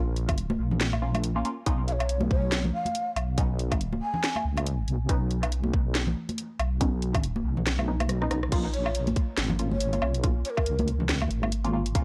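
Muted, detuned dub chord stabs with phaser, chorus and dub echo open this brooding, cavernous deep dubstep excerpt over a dark, saturated wobble bass, as an overdriven garage drum kit with a cracking snare, a tight electronic kick and ringing, close congas settle into a swung half-time feel, while a breathy, hollow shakuhachi with vibrato and dub echo drifts in at 1.9 s and returns at 8.7 s after a drum fill, all on a dry, gritty cassette-tape recording.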